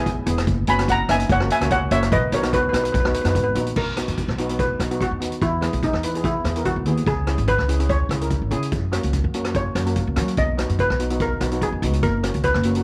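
Sunny and bouncy, this calypso at 145 BPM in B major sets a bright, airy double-seconds steel pan melody up front over shimmering cello-pan chords, a woody pizzicato upright bass and a mid-forward street-band drum kit with a boomy kick, crash, hi-hat and rim click, all in a small room with light reverb, as the lead pan takes a solo from 3.8 seconds through chords moving from Bmaj7 to Emaj7, C#m7 and F#.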